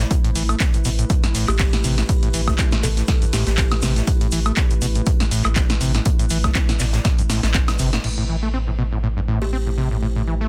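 A swung 121 BPM acid house groove in A minor drives this trippy, hypnotic clip, built on a punchy electronic kick up front, a punchy analog drum machine with crash, handclaps, hi-hat, snare and woodblock, a grainy tube shaker and a very quiet unplugged kit played with bundle sticks, all dropping out after a drum fill and band accent near 8 seconds. A squelchy, distorted acid bass riff with delay and a deep, round sine sub bass pump under the sidechain alongside a warbling, lo-fi tape-like pad, dark and in the background, which gets a filter sweep from 8.0 seconds. A buzzing, woody kalimba with delay adds brief close-miked melodic plucks, returning at 9.4 seconds, all within a dense, heavily limited modern master with light reverb.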